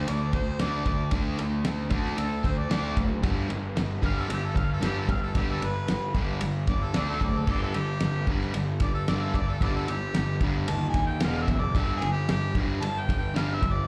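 A raw, rowdy slice of live garage rock heard through a club PA, with light reverb and a small-room feel, moving at 113 BPM in a straight 4/4 and cut from a longer piece. An overdriven harmonica with a clear tone and light vibrato takes a solo across the whole 13.9 seconds, ranging from G4 to A5. Beneath it, a bright, double-tracked fuzz guitar sits up front with distortion and slapback echo, a fuzzy, overdriven picked bass rumbles low, and a cloth-damped drum kit thuds along with a fat snare, tight kick and dark cymbals, its sound warm with a rolled-off top.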